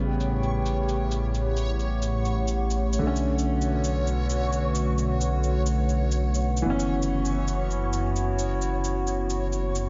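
A swung 16th-note feel at 132 BPM in 4/4 drives this ghostly, melancholic future garage excerpt in B minor, with an electronic shaker ticking through from 0.2 to 9.8 seconds, its tone tape-softened and re-recorded in a small room. Underneath, a dark detuned saw bass rumbles deep and up front, its beating, saturated tone heated by tube saturation as it holds the low end between F#1 and B1. A warbling, nostalgic pad sits forward in the mix with sustained chords that rise slowly and fade long, its lo-fi, vintage character shimmering through chorus and its own reverb. A woody upright piano with long sustain plays accompaniment in the middle register, trailed by tape echo, while a reversed, swelling granular texture glows dreamy and bright on a high C#5, bathed in its own reverb. The harmony moves from A7 to Bm7 at 3.0 seconds and on to F#7sus4 at 6.7 seconds, all set in light digital ambience with a rolled-off top end.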